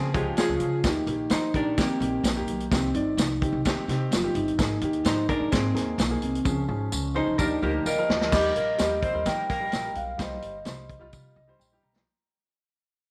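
An uptempo 1960s-style soul fragment in Eb major at 128 BPM opens with a band accent over a Db chord: a baby grand piano with short sustain, a dark, clean hollow-body archtop guitar picking a riff, and a woody, thumpy pizzicato upright bass on steel strings all start together. A tight, close-miked saxophone section adds a brief second line with a soft attack, light vibrato and tape echo. A mellow vibraphone played with soft mallets, motor off, soon carries the ringing melody. Beneath it sit an up-front vintage kit with a punchy kick, medium-tuned snare and rolled-off top, and a jingly tambourine that sounds close and dry. The chords move through Eb, Cm and Absus2 to another accent and drum fill. The saxophones return at 7.4 seconds, then the guitar riff stops at 8.3 seconds and the passage begins to fade. A short piano fill and a final drum fill close this cut from a longer piece, set in light reverb and small-room ambience with a warm, uplifting mood.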